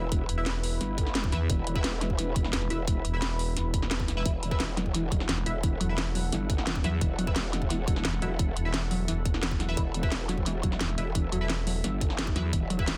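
A deep, moody pad with sidechain pumping and a detuned, wobbling growl bass open this mechanical, futuristic dark technical drum and bass excerpt in E minor at 174 BPM, joined at once by a tight electronic kick, a kit with cracking snare and metallic hats, a thick FM bass, and a nasal, band-passed chord stab with phaser and dub echo sitting in the background, before a warbly, lo-fi pulse-wave pluck enters at 4.3 seconds with chorus and echo in a dense, heavily limited modern mix.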